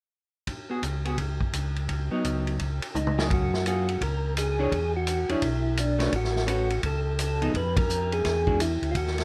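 Light reverb surrounds this short cut from a longer soul jazz organ trio piece, with the drum kit and the bass organ sitting up front. The feel is bluesy and swinging at 170 BPM in 4/4, with swung eighth notes. An acoustic kit with dark cymbals, a punchy kick, a medium-tuned snare and a rolled-off top starts at 0.5 seconds, and a clean, picked hollow-body electric guitar soon joins on accompaniment, while a round, lightly overdriven tonewheel organ carries the bass line through chorus vibrato and a slow rotary speaker. A drum fill at 2.9 seconds leads into the second section, and just ahead of it, from 3.0 seconds, a mellow tonewheel organ with third-harmonic percussion and its own slow rotary speaker takes the melody. The harmony moves from suspended C# chords into F#maj9, E13, A69, Fmadd11 and E9, with a band accent late in the passage.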